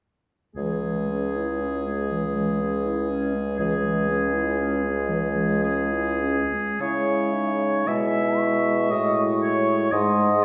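A clear, up-front oboe carries a second line from 0.6 seconds together with a mellow French horn, a smooth-topped clarinet and a warm bassoon holding the bass, in a solemn, elegiac slow romantic movement for wind quintet with a rubato triple-metre feel. At 6.8 seconds a hollow, pure concert flute enters in the background with the melody, its vibrato and lifted highs floating above the ensemble as the harmony shifts near the close. The fragment, cut from a longer piece, sits in a wet scoring-stage reverb heard from further back in the room.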